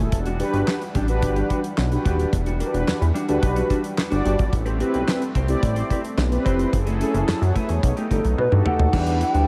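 Opening on a chorused, glossy sawtooth-and-pulse synth bass up front, round, full-bodied synth brass chords, a bold, brassy analog pad in the background and a dark, clean fingered electric guitar riff, this slick, danceable early-eighties boogie funk excerpt in E minor grooves at 109 BPM over a dry, damped 70s drum kit with a fat snare, tight kick, hi-hat, handclaps, crash and toms. It moves through Em9, Am9, F#m9 and B7b13 in a small, lightly reverberant room until a hollow, woody clarinet-like synth lead enters at 8.1 seconds, followed by a drum fill at 8.4 seconds.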